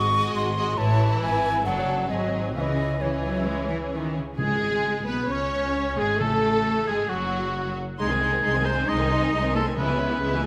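Set in 4/4 at 134 BPM with a rubato feel, this spirited, graceful classical passage in C# minor is cut from a longer piece. A symphonic violin section carries the bowed, lush melody with vibrato and a soft attack, while a second violin line sits in the background beneath it. An airy wooden flute plays a second line up front with a crisp attack until 3.9 s. At 4.4 s a cor anglais with light vibrato takes up a solo second line, joined by timpani struck with hard mallets on calf heads. A rich, intense viola section provides accompaniment, and an expressive cello section and a close chamber double bass section anchor the bass. The harmony moves from G#7 through A and D/F# to C#m, then on through F#madd9 and G#/B# before returning to C#m at 9.8 s, all set in the moderate reverb of a scoring stage.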